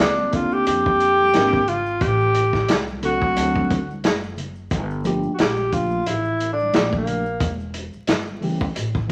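A breathy tenor saxophone carries the melody of this cool, smoky jazz-hop cut, its whispered subtone, scooped notes and gentle vibrato giving an intimate, roomy feel before it moves into a solo at 4.7 seconds and drops out at 7.6 seconds. Beneath it, a mellow tine electric piano plays clean, direct accompaniment coloured by a phaser, moving through Cm9, Am7 and D7 before settling on Gm9 and then Em. A plucked upright bass with gut strings adds a woody, thumpy low end. A lo-fi vintage drum kit sits up front, with a punchy kick, a medium-tuned snare, hi-hat and a muffled, rolled-off top, all with a swung sixteenth-note feel. Very quiet congas and maracas add a bright, compressed sparkle, while a large studio reverb and vinyl crackle wrap this excerpt in a hazy, late-night atmosphere.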